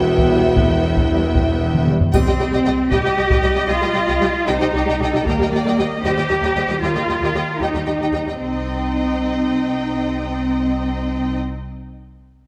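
In a straight 6/8 at 77 BPM counted in dotted quarters, this cut from a longer epic orchestral film score pushes forward with a relentless, heroic stride. Heavy-stick taiko drums sound close from 0.2 to 6.3 s, with a fill leading into the shift from E minor to C minor at 2.1 s, while a dark French horn section and bright trombones hold chords over the opening bars as a mellow, very quiet tuba underpins the bass, and a triangle glints briefly in the background. Lush, vibrato-rich strings carry the whole passage: clear, intense, distant violins sing the melody over a smooth second violin line, even violas and up-front cellos, with focused double basses anchoring the low end in a moderate scoring-stage reverb as the harmony moves through E-flat and back to C minor.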